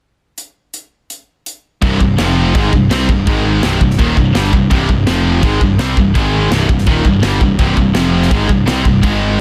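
Heavy and epic, this brief heavy metal passage opens with a polished, up-front studio drum kit alone, its punchy kick, medium-tuned snare, hi-hat and crash ringing in an airy small room, before three bright, distorted picked guitars (one high-gain, one tight, one double-tracked and compressed) sit in the background with a growly fuzz-overdriven electric bass from 1.8 seconds, driving a riff that circles C minor through F5 and Ab5 power chords in a dense, heavily limited mix.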